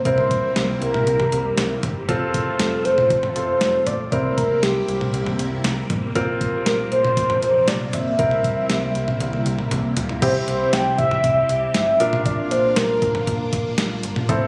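Bright and wistful, this synth-pop excerpt in straight 4/4 is led by a round, horn-like synth melody with vibrato, chorus and delay up front, while a swirling, phased string machine holds sustained chords in the background. A clear grand piano plays accompaniment over a snappy FM bass with a metallic attack, and a clean 12-bit drum machine with a thumpy kick, medium-tuned snare, hi-hat, toms and crash plays a fill from 9.2 to 10.2 seconds into a new section. The sound is that of a phone in the room, with club reverb and compression.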